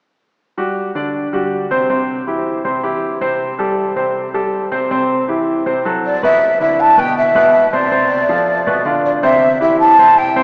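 A breathy jazz flute carries the melody in this sunny, sophisticated jazz fragment in G major, entering at 6.1 seconds with a hollow, metallic, mellow tone, vibrato and a tongued chiff on its notes, sitting up front yet with a distant quality. Beneath it, a warm grand piano supplies the accompaniment from 0.6 seconds, its natural, up-front sound moving through chords such as Am7/C, D13 and a rootless Amadd9. The tune moves briskly at 159 BPM in a straight 4/4, and the piano plays by itself until the flute joins near the start of the second section, after which both parts continue together to 10.4 seconds. The whole performance sits in a very reverberant cathedral-like space with a long, lingering tail, though the overall sound has the character of a small speaker. It is a short fragment cut from a longer piece.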